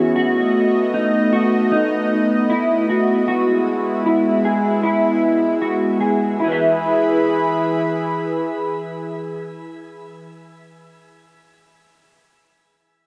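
A huge, wet ambient reverb with a long 4.4-second tail surrounds this short dream pop excerpt, cut from a longer piece. It moves at a straight 77 BPM in 4/4, in E major, tuned to A4 = 438 Hz, and its mood is ethereal and blissful. Up front, a smooth analog pad built from detuned sawtooth tones holds sustained chords with a slow attack, treated with chorus and shimmer reverb, until it stops at 10.3 seconds. A mellow electric guitar, dark, clean and fingered, plays arpeggios through analog chorus, digital delay and shimmer reverb, continuing alone to 11.0 seconds. The harmony moves from B7 to E, arriving at the E chord at 3.3 seconds, and a new section begins at 6.4 seconds.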